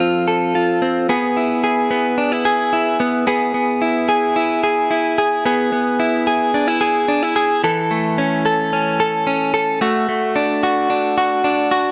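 Indie pop with a breezy, youthful mood, played by a lone clean electric guitar that runs the full 11.9 seconds of this short cut from a longer piece. The guitar is picked, compressed and recorded direct, sitting up front with a warm tone under light reverb. It moves through F and E before shifting to A at 7.6 seconds and closing on D.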